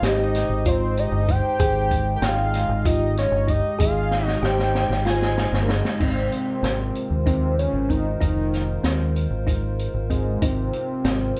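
Intricate and driving, this short progressive instrumental cut from a longer piece moves at 191 BPM in 7/8 with a straight feel, settled in Ab major as a band playing live together in one room with a moderate large-studio reverb. A fat, nasal analog lead carries the melody throughout, sustained and sweetened with vibrato, while a breathy, close-miked flugelhorn adds a jazz-style second line in the background until 5.7 seconds. Beneath them a dark, moody analog pad with slow attack and chorus holds sustained chords, moving from Abmaj7 to Ab69 at 6.0 seconds, and a tine-like FM synth pluck with a noise layer ripples through gentle, decaying arpeggios further back. The deep dub fingered electric bass sits up front, round and punchy, beside an open jazz drum kit with dark cymbals, a high-tuned snare and a boomy kick. A grainy, band-limited egg shaker joins quietly from 0.7 to 5.4 seconds, and a drum fill from 4.1 seconds carries the music into its second section.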